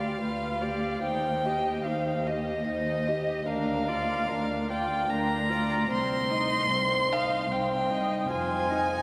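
A rubato 3/4 pulse around 74 BPM carries this serene, lyrical slow movement for string quartet, a nine-second passage lifted from a longer classical piece. The first violin sings the melody up front with a dark, vibrato-rich sul tasto tone, the second violin traces a close inner line beneath it, the viola adds an intimate, airy-bowed accompaniment with a soft attack, and the woody cello anchors the bass. Harmonies drift from G7/D through Cm/Eb, Bb/D and Cm to Fm7, all bathed in a cathedral reverb with a long 4.7-second decay.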